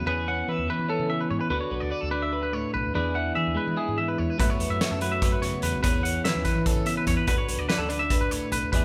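A clean, compressed twelve-string electric guitar and a twangy electric guitar picking warm arpeggios open this playful, intricate math rock and midwest emo excerpt in 7/8 at 291 BPM (eighths), with a dark, round, woody fretless bass beneath them in A major. At 4.4 seconds a loose indie drum kit enters up front with a punchy kick, fat snare and hi-hat in a pumping studio room. The band plays live in one room with light reverb, moving through chords such as Amaj9/E, D69, E7 and F#m7.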